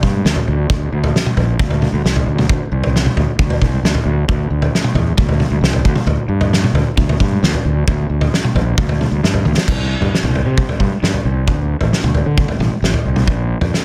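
This math rock and midwest emo excerpt moves at 134 BPM in a straight 4/4, with a restless, intricate mood. It is built from two parts: a loose indie drum kit and a fuzz-laden fingered electric bass, both sitting up front. The bass is growly and punchy, its overdrive lending a thick, saturated edge as it ranges from A1 to D3. The acoustic kit has a roomy, somewhat distant studio sound, with dark cymbals, a fat snare, a tight kick and toms under a rolled-off top. A drum fill at 9.4 seconds leads into a new section at 9.7 seconds, and the piece runs to about 13.8 seconds. Light reverb and a dense, heavily limited modern master give the recording a compact, forceful finish.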